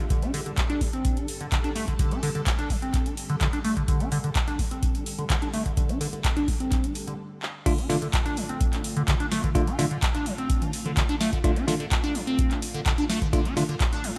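A squelchy, resonant liquid acid bass riff with phaser, tape echo and sidechain pumping drives this gritty, hypnotic acid house cut at 127 BPM in D minor pentatonic, its filter sweeping until a brief stop and drum fill lead into the drop at 7.7 seconds, where a bright, bell-like tine electric piano adds echoing stabs over a deep, up-front electronic kick, a booming analog drum machine with crisp snare, handclaps, toms, crash and metallic hats, and mellow, lush string machine chords pumping in the background, the whole mix sitting in a dry hardware recording with light digital ambience.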